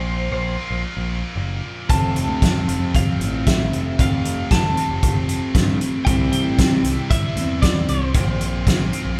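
A carefree, upbeat indie rock excerpt at 115 BPM opens with a clean, compressed twelve-string electric guitar melody carrying a warbly pitch drift over a bright overdriven guitar riff and a growling, overdriven picked bass, before a dark, slightly broken-up guitar through a small old amp and an up-front vintage drum kit with a fat snare and punchy kick join at 1.9 seconds, the band playing live in one room with moderate large studio reverb as the chords move from Bbsus2 through F and C.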